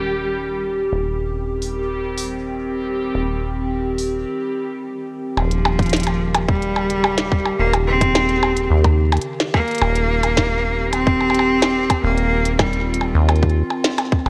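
A biting, bright cello carries the melancholic, eerie melody from 5.4 seconds in this 108 BPM IDM excerpt in C phrygian, over a rubbery acid bass, a detuned, chorused and phased tape-like pad, a reversed granular swell that ends at 4.3 seconds, clicky overdriven glitch drums, and a tight electronic kick, all wrapped in the warble of worn cassette tape.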